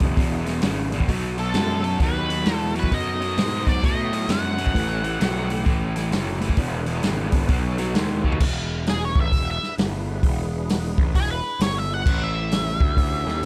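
The sound is dry and close, with very little reverb, as a gritty, swaggering stretch of blues rock and southern rock power-trio playing, cut from a longer piece, rolls along at 131 BPM in 4/4 with a swung eighth-note feel. Up front, a double-tracked, overdriven garage guitar pounds out a low riff with harmonic tremolo, while a growly, bright fuzz bass and a vintage acoustic kit with dark cymbals, a punchy kick and a rolled-off top drive the groove over E7, B7 and A7 changes. From 1.4 seconds a dark, octave-fuzz lead guitar carries the melody through wah and distortion. A drum fill at 8.2 seconds sets up a lead guitar solo from 8.4 seconds, where the riff guitar drops out. Beneath it all, a very quiet, fat tonewheel organ holds sustained chords with key click, third-harmonic percussion and a slow rotary speaker.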